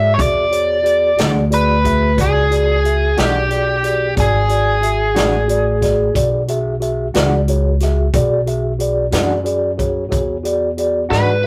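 Slow blues in 12/8 at 60 BPM in E mixolydian, rollicking yet laid-back, where a bright, biting overdriven lead guitar sings the picked melody up front over a mellow, clean tine electric piano resting on an E9 chord, a woody, growly pizzicato upright bass, and a swinging big-band drum kit with a boomy kick. A dark, clean fingered electric guitar with tremolo enters in the background at 1.2 seconds, and a drum fill arrives at 11.1 seconds, all captured in a rough rehearsal-room recording with modest small-room reverb.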